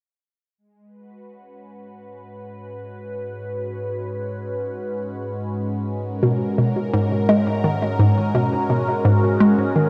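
A hollow, bouncy square-wave pluck riff arrives up front at 6.2 seconds with chorus and delay, over a swirling, bright phased analog pad whose sustained Abmadd9 chords fade in from 0.6 seconds and a mellow, warbling analog drone bass fading in beneath, all set in a dark plate-reverb space for this expansive, hypnotic slice of ambient, sequencer-driven space music cut from a longer piece.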